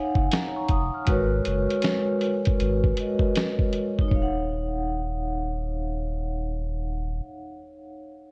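Lo-fi hip hop at 79 BPM in Eb minor, hazy and reflective, with a soft-mallet vibraphone ringing out airy, metallic Ebm9 and Abm11 chords through cassette tape and a low-pass filter, a round sine sub bass sustaining underneath until 7.2 s, and a muffled, compressed sampler-style drum kit with a thumpy kick, medium-tuned snare and hi-hat swinging until 4.3 s, all under light reverb and worn, warbling tape pitch drift in this excerpt cut from a longer piece.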